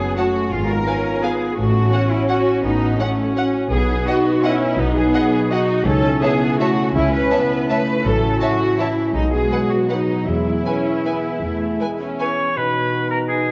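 Elegant and festive, this rubato orchestral ballroom waltz excerpt sets a rich string section of violins, violas, cellos and double basses over mellow French horn chords and ringing harp arpeggios, with a distant violin melody and a dark, portamento-laden second violin line in the background. The strings then give way to a bright, airy flute and a clear, up-front oboe at 12.2 seconds, joined at 12.6 seconds by a dark clarinet and a mellow bassoon, all bathed in a wet concert-hall reverb and the warbling pitch drift of worn cassette tape.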